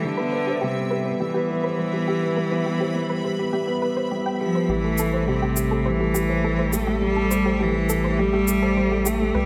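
A rich, expressive solo cello sings the melody up front from the first moment, its bowed line colored by vibrato and portamento, over a felt-muted upright piano riff that is mellow and intimate, with audible action noise and a delay, while a filter sweep moves across the piano through the opening 4.7 seconds. Beneath them a granular cloud pad holds blurred, evolving chords with its own built-in reverb, and a soft round pluck adds dark arpeggios with chorus and delay in the background from 0.2 seconds. This cinematic, moving piano and strings electronica runs at 103 BPM in 4/4 with a straight feel in A minor, shifting from Cmaj7 to Am7. At 4.7 seconds a build-up begins as a deep, nasal analog bass enters, joined at 5.0 seconds by an electronic, layered shaker with overdrive that sounds re-recorded in a large room. A moderate echo chamber reverb gives the cut from a longer piece a moderate sense of space.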